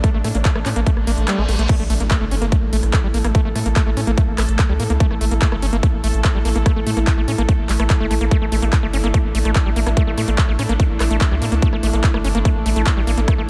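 This hypnotic, intense psychedelic trance passage, cut from a longer piece, opens with a punchy, overdriven electronic kick up front and a layered dance kit of metallic hats, handclaps, rim clicks and crash. Alongside them, a squelchy, saturated acid bass riff with analog delay and a bubbling, detuned stepped-filter texture holding sustained chords in the background both pump from sidechain compression. A deep, round analog bass joins almost at once, and a nasal, wobbling vowel-sweep bass flickers in and out, barely audible. A very quiet reverse cymbal sounds as the kick briefly drops out, leading to the drop at 1.7 seconds, which is marked by an electronic impact. From 2.0 seconds a warbling, nostalgic lo-fi pad with chorus and phaser sits behind the rest, while light digital ambience surrounds the mix and 12-bit sampler grit gives the stepped-filter texture a coarse edge.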